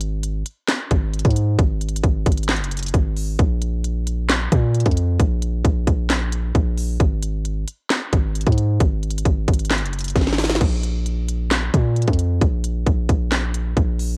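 A home cassette recording with a digital ambience frames this brooding, menacing fragment of trap hip hop, cut from a longer piece and moving at 133 BPM in 4/4 with a half-time feel. An electronic trap kit sits up front, its hard-clipped kick, sharp snare, crisp hi-hats, handclaps and crash cymbal carrying a cassette tape coloring of their own. Alongside it, a long, sustained 808-style bass, also up front, rings out with a deep, sine-like tone that strikes with a fast attack and then decays, mellow, between Gb1 and Bb2. Both parts run together from the opening to the close, and a drum fill at 10.2 seconds leads into a fresh passage at 10.6 seconds that carries the piece to its end at 14.2 seconds.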